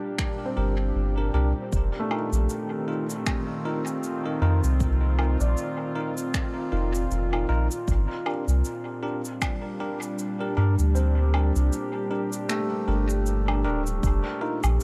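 A warbling, nostalgic tape-like pad opens this hazy, peaceful ambient dub excerpt in F mixolydian at 78 BPM with a swung 16th-note feel, holding detuned, chorused chords over Gm and F7sus4, as an overdriven, deep electronic kick and overdriven electronic finger snaps, cabasa and woodblock with dub echo enter at 0.2 s, followed by intimate felt-muted upright piano arpeggios with audible action noise and dub echo, bright bell-like tine electric piano stabs, and a round, up-front sub bass, all in light reverb, with the kick dropping out from 11.0 to 14.0 s.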